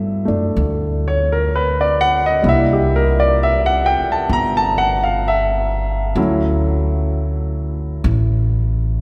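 A lazy swung 4/4 at 64 BPM carries this late-night, romantic jazz ballad excerpt, tuned to A4 = 444 Hz, where a warm, natural baby grand piano sits up front voicing a rootless Gmaj13 before moving to C9 at 2.4 seconds and Dmaj9 at 6.2 seconds, while a woody, steel-strung upright bass plucked pizzicato holds the low end close by, both bathed in a long, wet cathedral reverb that gives the church-like hall a lingering glow.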